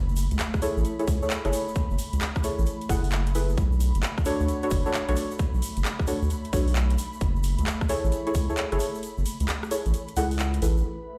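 Steeped in large studio reverb as if played through a big sound system in a bare room, this bouncy, moody two-step UK garage excerpt at 132 BPM, swung 65% on the 16ths, sets a saturated, up-front sub bass and a tight, layered electronic kick against a garage kit of handclaps, rim clicks and low-pass-filtered metallic hi-hats, with a grainy egg shaker distant in the background, dark, warbling chord stabs with tape echo moving from F#m7 to Bm9 and back, and an ethereal pad in ensemble chorus that pumps with the sidechain, until the kick drops out at 9.0 s and a breathy, detuned pad slips in at 10.8 s.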